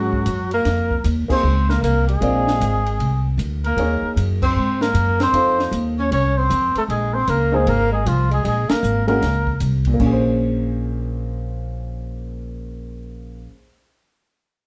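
Heard from further back in a wet club reverb, this swinging, late-night small-group jazz excerpt in Bb minor at 154 BPM sets a veiled, cup-muted trumpet melody over a breathy, subtone tenor saxophone second line until 9.6 s, while a clear grand piano with audible action noise plays accompaniment and a woody pizzicato upright bass carries on to 13.5 s, and a compact cocktail drum kit with dark cymbals and a punchy kick stops at 10.1 s after band accents punctuate the swing.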